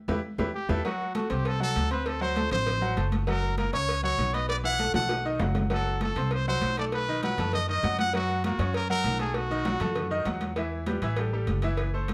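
A fiery, danceable salsa groove drives along at 198 BPM in straight 4/4, opening with a band accent and a drum fill while the woody, pizzicato upright bass holds its up-front place beneath a brilliant, intimate baby grand piano with audible action noise and short sustain. Round, low-tuned bongos and cowbell with soft hands sit in the background alongside thin-skinned, high-tuned congas heard distantly in a large room, with another drum fill at 4.9 seconds. A bright solo trumpet with light vibrato and plate reverb carries the melody from 0.5 to 10.3 seconds over chords moving from Em through F#dim, D7 and B7, closing on Emadd11 and A5 in this excerpt from a longer piece.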